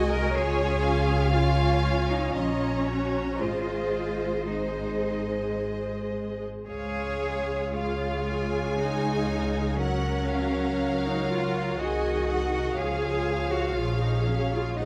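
Focused, up-front double basses with a smooth top anchor this serene, rubato excerpt from a slow romantic movement for string orchestra in 3/4, as a clear violin section carries the melody above a rich second violin line, distant violas add expressive portamento accompaniment and even, smooth cellos share the bass line, all bowed with vibrato in a dark, warm production with moderate scoring-stage reverb.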